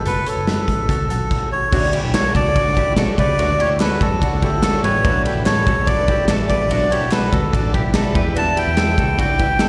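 A straight 4/4 pulse at 145 BPM drives this bittersweet, wistful slice of jangly indie pop, carried by a big, dark rock drum kit with a punchy kick, a round, foam-muted picked bass, and chorus-drenched hollow-body guitar arpeggios under a reedy, breathy melodica lead that sits up front with slapback echo and digital delay. At 1.7 s the harmony moves from F#m to Dmaj7 as a shimmering, fingerpicked twelve-string acoustic guitar and a buzzy combo organ with light vibrato join in the background, followed at 2.1 s by crisp group handclaps. Em7 arrives near the close, and the whole scene sounds like a live gig heard through the venue's PA, with small room ambience and recital hall reverb.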